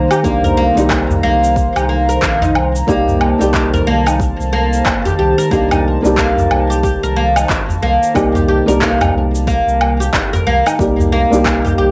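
Hypnotic and warm, this organic downtempo excerpt sways with a gentle swing over a single Cm7 chord, led by a bright, woody, plectrum-plucked oud playing arpeggios up front, while a felt-muted upright piano adds soft, dark accompaniment with audible action noise and tape echo. A detuned sawtooth analog pad holds smooth chords with chorus, and it pumps to the sidechain along with the piano and a round sine sub bass. Overdriven electronic woodblock, shaker and handclaps, re-recorded in a large room, enter at 0.1 s, followed by a deep overdriven electronic kick from 0.2 s, while a small, saturated udu sits in the background of this lightly reverberant home recording on cassette.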